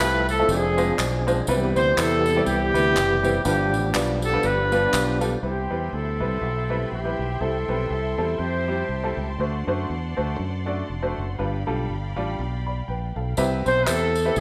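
Reverent yet jubilant, this uptempo gospel clip moves at 121 BPM in a swung 4/4, centered in C major with a tuning slightly below standard pitch. An up-front horn section carries the melody with a smooth top and light vibrato, dropping out at 9.4 seconds before returning briefly near the close. A clear, woody upright piano with a slightly detuned, short-sustained tone accompanies throughout, while a fingered electric bass sits up front with a direct, amped sound. During the opening 5.4 seconds, a lightly overdriven tonewheel organ holds chords in the background through a slow rotary speaker and chorus vibrato, joined by group handclaps and a tube shaker with tambourine that return for the final moment. From 5.4 seconds a lush, bowed studio string section takes over the sustained chords, moving through Cmaj7, Am7, D7 and G7, all set in a moderate recital hall reverb.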